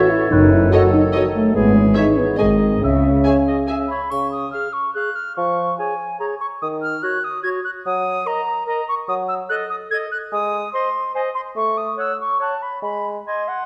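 Heard through a wet scoring-stage reverb, this playful, whimsical film cue in 3/4 opens with mellow French horn chords, lush violins carrying the melody over dark chamber violins, violas, expressive cellos and rich double basses, while a pure, up-front flute, a clarinet, a distant cor anglais and a soft-edged bassoon weave their lines throughout, until a faint triangle at 4.1 s marks the turn into a mischievous, magical second half carried by the woodwinds.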